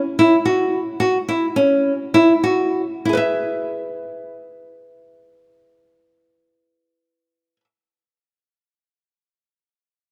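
Contemporary instrumental music in free time and E major, this short excerpt from a longer piece has a playful, shimmering mood. A solo nylon-string guitar carries everything, fingerpicked with a small, acoustic tone that sits up front, sounding from 0.2 seconds to 7.6 seconds within a range of C#4 to E5. The opening passage slows down over its first 3.1 seconds, moving through an F#5 chord before settling onto E as a second passage begins. Close, detailed microphones capture the guitar intimately, while a moderate concert hall reverb with a 2.6-second decay lends a spacious bloom. The tuning rests slightly high, at A4 = 442 Hz.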